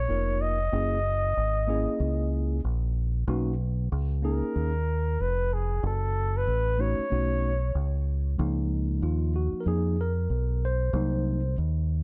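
Smooth and warm, this short jazz-hop excerpt from a longer hip hop piece settles into a relaxed 94 BPM groove in 4/4 with a swung sixteenth-note feel, in D-flat major. A breathy flugelhorn carries the melody with light vibrato and scooped notes, giving it a vintage jazz character up front in the mix until 8.1 seconds. Underneath, a deep, round fingered electric bass in a dub style sits directly amped and prominent throughout. A clean, mellow tine electric piano supplies the accompaniment, then takes a solo from 8.4 seconds as the music moves into a new section. The harmony drifts through rich chords such as Db6/9, Gb9, Cbmaj9 and Gbm before returning to Db6/9 and closing on Cm7b5. The production is dark, with light reverb and the feel of a small room.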